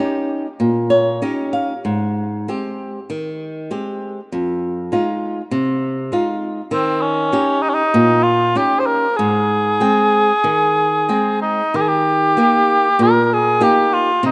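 A rough home-demo sound, dull at the top and bathed in a lush hall reverb, frames this tender, nostalgic fado-style ballad in Ab major, moving freely around 97 BPM in 4/4 and tuned to A4 = 444 Hz. A bright, boxy flamenco guitar with fresh strings fingerpicks the accompaniment up front through chords such as Eb7, Abmaj7 and Fm7, adding a short fill at 0.6 seconds. At 6.7 seconds a close-miked cor anglais takes the melody in a warm, classical style with light vibrato, and the passage settles onto Eb at 11.7 seconds before breaking off mid-piece.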